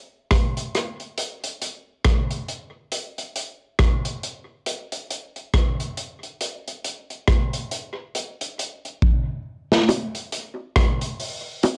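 A vintage drum kit with a punchy kick, medium-tuned snare, rim clicks and hi-hat opens this laid-back, hazy reggae excerpt, its rolled-off top and swung sixteenths carried by light reverb and cassette home-recording grit until a drum fill at 9.0 seconds brings in tight, high-tuned bongos played with soft hands, close and up front with a tape echo, joining the kit from 9.9 seconds to the cut at 11.8 seconds.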